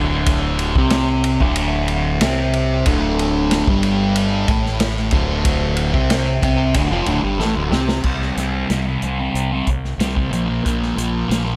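Mysterious and dark, this short psychedelic rock passage is cut from a longer piece and moves at 92 BPM in a straight 4/4 in D minor. A double-tracked fuzz guitar sits up front with the riff, its picked, distorted tone colored by a phaser. Underneath, a fingered electric bass adds a round, overdriven low end, heard both direct and through an amp. A vintage acoustic drum kit with a punchy kick, medium-tuned snare, dusky cymbals and a rolled-off top end plays hi-hat, ride and crash, with a fill at 7.4 s. The harmony sits on D5 before shifting to C5 at 8.0 s for a new section and then to Bb5, all set in a small room with light reverb.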